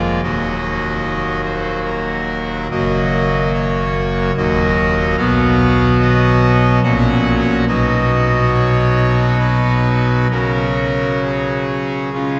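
A pipe organ on its trumpet stop opens this classical chorale-style excerpt: a brassy, bright solo with baroque voicing and a crisp chiff, sitting up front and ranging from deep pedal notes up to the treble. Moving in a flexible, rubato three-beat pulse through chords such as Ebm, F#, B and a closing C#sus4, the music feels majestic yet serene. A long, wet cathedral reverb places the instrument further back in the room with a softened top end, and the passage runs 12.4 seconds, cut from a longer piece.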